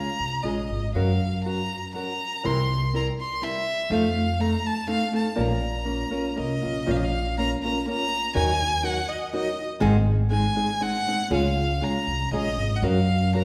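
In a rubato 3/4 at 121 BPM, this Mexican mariachi folk passage in B-flat minor, cut from a longer piece, feels both romantic and festive, with chords moving from Db and Gb through C7 and F7 to Bbm. A single bowed violin carries the high melody up front with a clear, focused vibrato, while a small, fingerpicked nylon-string guitar supplies warm accompaniment and a woody, thumpy pizzicato upright bass joins at 0.2 s. The whole ensemble sits in the lingering reverb of a church or concert hall.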